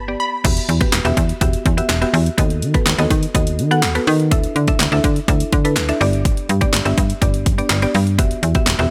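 A straight 4/4 pulse at 124 BPM arrives at 0.4 s as a layered, tape-tinged house drum kit (punchy kick, cracking snare, hi-hat, handclaps and crash) kicks off the drop of this confident, bittersweet dance-pop excerpt in E minor, joining a snappy, metallic slap-like FM bass and a woody, round mallet-like synth pluck with chorus, both pumping against the sidechain, as the harmony moves through Emadd9, B7/D#, Dsus2 and G, with the bass and drums up front in a dry mix.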